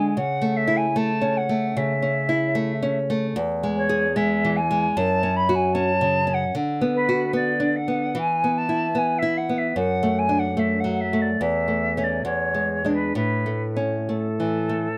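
The rhythm flows freely in 4/4, a rubato pulse drifting between 65 and 78 BPM. This romantic duo for flute and classical guitar, in A major, carries a serene, warm mood across a 15-second passage cut from a longer piece. The silver concert flute sings the melody throughout, its pure, tongued tone shaded with vibrato and an expressive, slightly distant quality. Beneath it, the nylon-string guitar supplies fingerpicked accompaniment, small and acoustic in character yet placed up front. The harmony moves from A over C# through chords such as Bm over D and D over F#, reaching E7 at 12.3 seconds before settling on A at 13.1 seconds. Close, detailed microphones and very little reverb keep the sound intimate.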